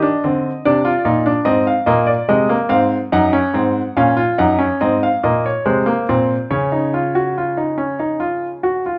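Classical baroque-style three-part fugue for solo grand piano at 72 BPM in 4/4, serious and contemplative, with a clear, present, up-front piano of short sustain ranging from Gb2 to Gb5 in light reverb, moving through Ebmaj7(no3), Ab and Ebm/Gb before settling into Db major, heard as a 9-second excerpt cut from a longer piece.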